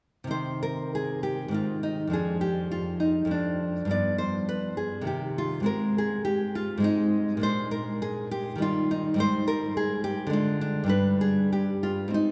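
A solo nylon-string guitar, fingerpicked and up front with audible finger squeak, carries this grave yet flowing baroque-style classical dance in C minor. It moves at 102 BPM in 3/4 with a rubato feel from 0.2 to 12.3 seconds, passing from Cm through Ab, Fm13 and G7, returning to Cm and Ab, then on to Bb7, Eb, Ab5, Ddim and a closing G5. A cathedral reverb with a long 4.3-second tail surrounds the guitar's warm acoustic tone, and the passage is cut from a longer piece.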